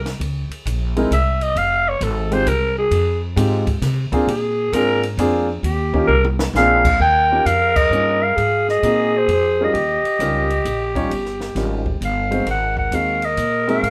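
Small-group jazz swing in a sophisticated 3/4 lilt, this excerpt opens with a woody, thumpy pizzicato upright bass and a dry cocktail drum kit with dark cymbals and a punchy kick. A mellow, dark grand piano comps beneath a breathy, subtone alto saxophone that takes the solo spotlight over the first 7 seconds. After a drum fill, a raspy growling clarinet with scooped notes and light vibrato enters at 6.6 seconds to carry the melody up front, with the saxophone dropping to a gritty second line and the band hitting an accent at 7.7 seconds, all in a moderate studio reverb.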